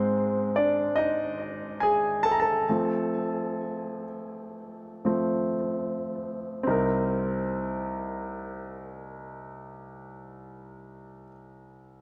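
In a straight, unhurried 4/4 that slows over its first 6.7 seconds, this emotional, longing pop excerpt features a clear, polished concert grand piano played solo and up front, its deep bass and short sustain shaped by a touch of delay and light reverb as the harmony moves from Ab to F before settling on Cm7 at 6.7 seconds.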